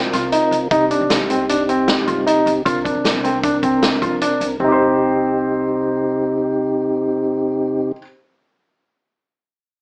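A dark concert grand piano stands out in this short cut from a longer progressive instrumental, playing arpeggios between C4 and C5 up front with a smooth, vintage tone and audible action noise. The band moves at 154 BPM in 5/4 with a straight feel in C minor, and the mood is tense and intricate. Beside the piano, a soft, flute-like tonewheel organ plays accompaniment through a fast rotary speaker. A woody, growly upright bass, plucked on steel strings, sits in the background. A swinging big-band drum kit with a punchy kick and a medium-tuned snare plays through the opening, then stops at 4.5 s as the harmony settles back on C minor after moving from Fsus4/C through Cm to Bb/C. The whole recording carries a moderate studio reverb and a small speaker sound.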